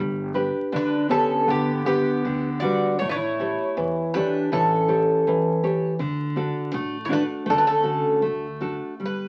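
A nostalgic, tender fado-style ballad in D major at a rubato 80 BPM, this short excerpt sets a bright, metallic Irish bouzouki melody up front over a full-bodied, fingerpicked nylon-string guitar and a woody, thumpy pizzicato upright bass in the background, while a dark, shimmering, octave-doubled twelve-string acoustic guitar adds a second line from 0.7 to 8.2 seconds, all moving from G through A7 to D inside moderate studio reverb and the crackle of a very old 78 rpm record.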